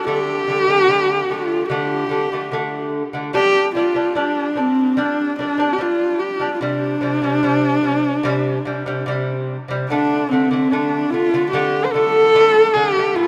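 Mongolian folk in a solemn, windswept mood at 73 BPM in 4/4, this short cut from a longer piece sets a husky, bowed horsehead fiddle melody in D yu mode, sung out with vibrato, portamento and a soft attack and touched by tape echo, over bright, delicate fingerpicked lute arpeggios on double nylon strings, moving through D5, G5 and C5 chords before returning to D5 at 9.9 seconds, all of it bathed in a huge ambient reverb.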